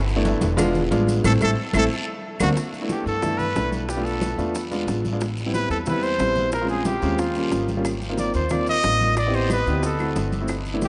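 A straight, danceable 4/4 groove drives this sunny Afro-Cuban jazz fragment, built from damped, soft-handed congas, round low-tuned cowbell and bongos, a raspy guiro, grainy distant maracas and woody claves that appear in two short stretches. A clear trumpet with light vibrato leads up front, soloing through the opening 2.6 seconds while the band hits an accent and a drum fill lands, over a dark pizzicato upright bass and an intimate baby grand piano whose action noise is audible. The recording rings out in a vast, cathedral-like reverb that softens the highest treble.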